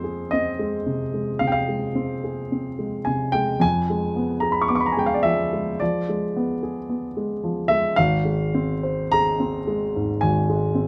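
A dark grand piano opens alone on an F minor chord, playing a romantic classical nocturne at a slow 55 BPM in 4/4 with a flexible, rubato feel. Its mellow, short-sustained tone sits up front in light reverb, ranging from Ab1 up to D6 as the harmony moves to a diminished chord at 3.6 seconds and settles on F minor over Ab at 8.0 seconds. The mood is yearning and melancholic, and the passage is cut from a longer piece.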